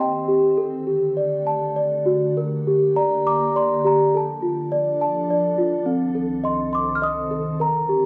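In a gently rubato three-time sway, this wistful, dreamy lullaby fragment sets a delicate, bell-like celesta melody up front over a glassy, ethereal FM pad whose slow-attack sustained chords shimmer with ensemble chorus and built-in reverb, all steeped in a dark recital-hall ambience as the harmony drifts from Cm through a Dsus4 resolving to D into Gm at 2.4 seconds and onward to Dm and a closing Adim/C.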